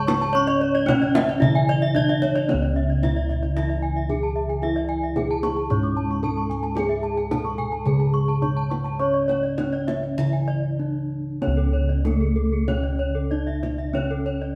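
Recorded live in a stone room with a wet reverb, this hypnotic Balinese gamelan piece has all its parts ringing together from the first second. A wooden-mallet bronze metallophone carries the melody with the shimmering beats of paired tuning, and a boxy second metallophone sits in the background with low accompaniment. Two bright horn-mallet metallophones play arpeggios up high, one of them airy, while dark, round bossed gongs hold the bass up front and a tight, band-limited, vintage-sounding kendang adds percussion. A break at 10.5 seconds brings a kendang fill, which leads into a new section at 11.4 seconds.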